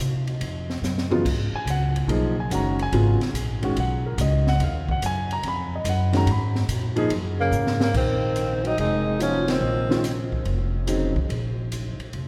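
A vibrato-laden tenor saxophone with a soft attack enters at 7.4 seconds, sounding distant and roomy yet up front, while a mellow, punchy trombone plays a second line in the background in this searching, intense modal jazz excerpt at 143 BPM with a swung feel in Bb phrygian. Beneath them, a woody pizzicato upright bass sits up front, a concert grand with deep bass comps from 1.1 seconds, and an open drum kit brings dark cymbals, a high-tuned snare and a boomy kick, with fills and a band accent at 9.4 seconds. A cathedral reverb casts a long, wet church-hall glow over the whole performance.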